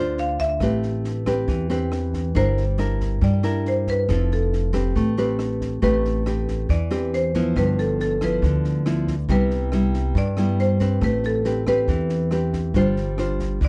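A bright, percussive marimba played with medium hard mallets carries the melody in this melancholic, smooth bossa nova excerpt in A minor at 138 BPM, its airy padauk tone touched by a slapback echo. A full-bodied, fingerpicked nylon-string guitar and a woody pizzicato upright bass sit up front beneath it, moving through chords such as Am9, C9/G, Fmaj7 and Cmaj7. A compact cocktail drum kit joins at 0.2 seconds with a punchy kick, rim clicks and a high-tuned snare, all captured in a dry, close 1970s-style studio sound.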